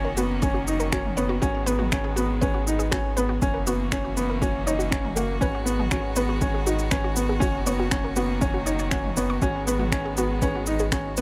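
A straight 4/4 pulse at 120 BPM drives this melancholic, hypnotic piano and strings electronica in G# minor, where a punchy, overdriven electronic kick enters at 0.4 seconds beneath a layered deep house kit of finger snaps, shaker and toms while a clear, woody, slightly detuned upright piano riff sits up front with digital delay, a bright bowed string quartet holds vibrato-rich chamber chords, a lush sawtooth unison pluck spins arpeggios through delay in the background, and a round sine sub bass anchors the dry mix as the strings, pluck and bass pump with the sidechain over chords moving between G#m7, F#7 and D#m7/F#.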